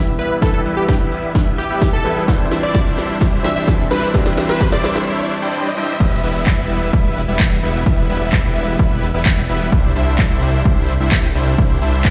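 Festival progressive house in E minor at 129 BPM, this euphoric, emotional excerpt opens with a build-up of soft, felt-muted upright piano, lush supersaw chords under a filter sweep, and a catchy, bright plucky unison lead, all with tape echo, while a faint riser joins from 1.5 seconds and an overdriven house kit with cracking snare, metallic hats and handclaps plays a drum fill over a punchy, up-front kick. After a brief break and swell, the drop lands at 6.0 seconds, where the piano stops and a thick, menacing detuned saw bass takes over under pumping sidechained supersaws, the Em and Cadd9 chords carrying the lift. The drums sound re-recorded in a large room, and the whole mix plays through a big system in a bare stone room with light reverb.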